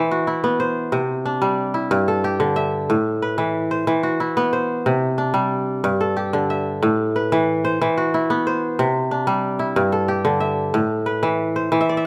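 The rhythm rolls along in a flowing 12/8 at 122 beats per minute, counted in dotted quarters with a straight feel. This West African traditional piece is a solo kora performance, and its mood is joyful and warm. The fingerpicked acoustic kora sits up front, with a ringing, crisp tone spanning G2 to E5. Its harmony cycles through E5, C, G5 and Am in a repeating loop, tuned slightly below standard pitch at A4 = 436 Hz. A moderate recital-hall reverb gives the strings an airy glow, and the kora adds a brief fill at 11.8 seconds, just before this short excerpt of a longer piece cuts off at 12.1 seconds.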